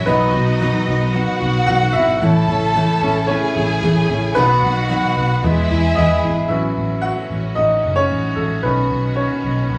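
The recording has a live-in-one-room studio sound, with a wet reverb giving the ensemble a shared space around it. This is an uplifting, warm pop piece at 112 BPM in a straight 4/4, cut from a longer work. A bright, woody upright piano sits up front as the accompaniment and carries a solo throughout, while a round, punchy electric bass, dark and foam-muted, anchors the low end just as prominently. A full-bodied fingerpicked jumbo acoustic guitar plays a riff, and a distant violin section adds an expressive second line with soft attacks, vibrato and portamento. Both guitar and violins drop out at 6.5 s as the music moves into a new section. Beneath it all, a lush, focused string section holds sustained chords in the background, moving through B, A and E before settling on A6 and Badd9.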